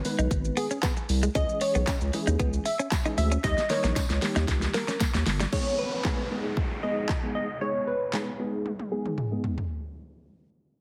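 Driving and confident, this dance-pop excerpt in G# minor moves at 115 BPM in a straight 4/4, opening on a drop over G#m, C#m and D# chords. An electronic, layered pop drum kit with a punchy kick, fat snare and hats sits up front, while a deep, thick sine sub bass with saturation and sidechain pumping anchors the low end. A worn, slightly out-of-tune tine electric piano carries the accompaniment through ensemble chorus, a low-pass filter and its own sidechain pumping. A bright, picked clean electric guitar plays a compressed riff through lush chorus, and a glassy, crystalline wavetable pluck with a detuned noise layer, ring modulation and a moving notch carries the melody, with a jingly tambourine sitting distant in the background. At 5.5 seconds the guitar and bass drop out as an electronic downlifter and a filter sweep enter, and a drum fill at 8.7 seconds closes the passage under a light reverb and a heavily compressed, radio-like sound.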